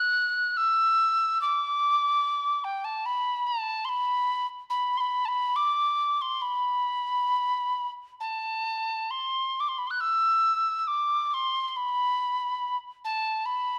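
A lone breathy, mellow metal tin whistle opens this mournful, haunting Celtic folk fragment in a free, rubato three-four, sitting up front with vibrato, tongued chiff and rolled-off highs, ranging from G5 to F#6, before the phrase shifts into a new section at 9.1 seconds, all carried by a moderate stage reverb that lingers around the solo line.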